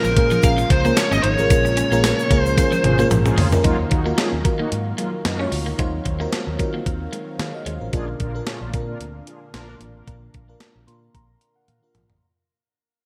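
Bright digital production with a plate-style ambience gives this dramatic, urgent piece of 1980s-style pop a polished, airy sheen, and the excerpt is cut from a longer piece. A clean 12-bit drum machine sits up front with a thumpy kick, a medium-tuned snare, hi-hat, tambourine and toms soaked in gated reverb. A dark, round fretless bass anchors the lightly swung groove, while a lush, dreamy FM electric piano with a soft pad layer carries the accompaniment through chorus, phaser and shimmer reverb. A bold, brassy analog pad holds sustained chords in the background, joined by a slightly broken-up, picked guitar riff and a grainy egg shaker. A distorted, high-gain lead guitar states a brief melody at the opening and stops at 3.1 seconds. Mellow, detuned synth brass stabs arrive at 2.8 seconds as the band accents and a drum fill build into a long fade-out from 3.6 seconds, closing with an electric piano fill.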